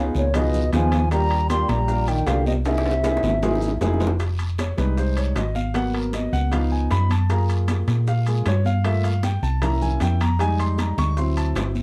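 A dark, warm production with light reverb frames this short cut from a longer Afro-Cuban jazz piece in F minor, moving at a driving 155 BPM in straight 4/4 with a sophisticated air. A pure, hollow silver flute carries the opening melody with vibrato and plate reverb, backed by a forceful trombone second line in the background, both stopping at 3.8 seconds. Up front, a round, punchy hollow-body electric bass anchors the low end while the concert grand piano, natural and deep in the bass, comps through the opening and then takes a solo from 4.2 seconds to the end over changes such as Fm9, Abm9, Gbmaj7 and C7b9. The percussion bed pairs ringing, high-tuned congas played with hard hands and tight, saturated bongos, with vintage metal-shell timbales, a raspy guiro and grainy, close maracas adding texture. A drum fill between 2.7 and 4.2 seconds pushes the music from the opening statement into the piano feature.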